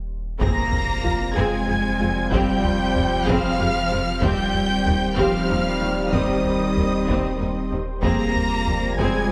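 Set in a moderate scoring-stage reverb, this vast, tense fragment of a hybrid orchestral and electronic film score in 6/8 opens on a round dub sub bass and a very quiet felt-muted upright piano with audible action noise; at 0.4 s a faint electronic impact and background taiko struck with hard sticks arrive alongside a dark, lush high violin melody, a close second violin line, a viola section with portamento, smooth cellos, a focused double bass section, and sustained chords from bright trombones and mellow French horns, while a glassy, ethereal FM pad joins at 1.6 s over harmony that moves from Fmadd9 to Cm/Eb and back.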